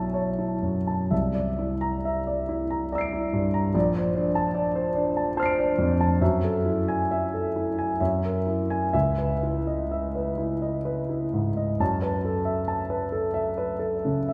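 Flowing in a rubato triple metre, this serene, dreamy impressionist classical passage, cut from a longer piece, features a solo concert grand piano with an intimate, natural tone, deep bass and audible action noise, spanning A#1 to D7 through lush ninth chords such as B9sus4, C9 and A#maj9 before settling on F#m7, all bathed in a wet concert hall reverb that places the listener further back in the room.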